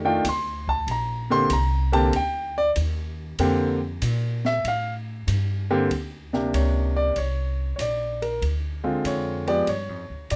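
A natural-sounding concert grand piano with a deep low end carries the melody and takes a solo through the first 5.9 seconds of this playful, relaxed swinging jazz trio excerpt, sitting up front alongside a woody pizzicato upright bass, while an open acoustic drum kit entering at 0.2 seconds adds dark cymbals, a high-tuned snare and a boomy kick from a studio room, all under light reverb.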